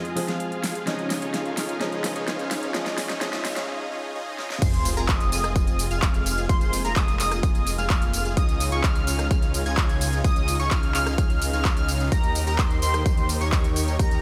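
A punchy, overdriven electronic kick drum sits up front once the drop lands at 4.6 seconds, driving this euphoric, anthemic festival progressive house cut at 128 BPM in F minor, taken from a longer piece. Before it, a build-up pairs a thick, detuned supersaw riff, heavily compressed and low-pass filtered with tape echo, against a concert grand piano with audible action noise and a slow-attack, nasal pad in the background, both pumping to the sidechain. The big-room drum kit carries a huge snare, metallic hats, handclaps, tambourine, rim clicks and crashes through a drum fill, while a very quiet riser and sub drop ride beneath, leading into a brief break. At the drop the piano stops, and a catchy, plucky unison lead takes over with arpeggios high in its register, colored by chorus, vibrato and a moving notch, as a saturated, chorused saw bass fills the low end. The chords move from Fm to Dbadd9 and finally Eb, all within light digital reverb.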